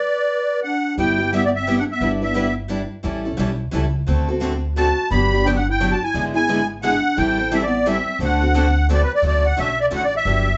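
A reedy, shimmering musette accordion carries the melody over a dark, breathy clarinet second line, the pair opening alone before the band enters at 1.0 seconds in this lively, swinging jazz manouche waltz at 174 BPM in G major. Underneath, a woody, thumpy upright bass with gut strings sits up front beside a boxy archtop guitar on old strings and a bright, fresh-strung steel-string guitar with audible finger squeak, both picking the accompaniment through changes such as G6, A7 and Gmaj7. The clarinet's whispered subtone and scooped notes fall away at 8.9 seconds, leaving the accordion to lead into a new section on Dmaj7, all in a live-room sound with a soft, dull top end and a wet reverb.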